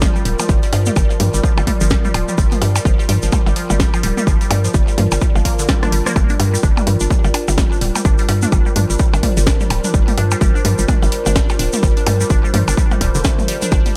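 This excerpt of minimal techno has a clinical, cool sound, set in a digital ambience with an echo-heavy mix. At 127 BPM in 4/4 with a swung sixteenth feel, it sits on G minor throughout. An overdriven electronic kick drum punches up front, joined by an overdriven house drum kit with a cracking snare, hi-hat and rim click, both re-recorded in a large room, with a drum fill at 5.7 seconds. A hollow, bouncy FM bass knocks underneath with sidechain pumping, while a grainy egg shaker and electronic toms and percussion blips with tape echo fill out the rhythm. A juicy, squelchy blip pluck plays the riff through phaser, tape echo and pumping. Above it a warbling, nostalgic pad drifts with chorus and reverb, lending a lo-fi, vintage haze.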